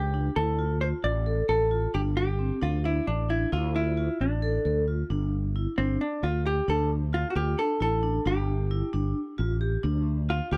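Set in a driving 7/8 at 266 BPM counted in eighths, this tense progressive instrumental in D minor moves between Dm and G5 chords in a clip cut from a longer piece. A dark, clean, compressed hollow-body jazz guitar carries the melody up front. It moves into a solo at 5.1 seconds, while a bright, growly fretless electric bass with ensemble chorus sits close beneath it. A vibraphone struck with medium hard mallets spins metallic, ringing arpeggios with a fast motor vibrato, all captured in a dry, close 1970s-style studio sound with small room ambience.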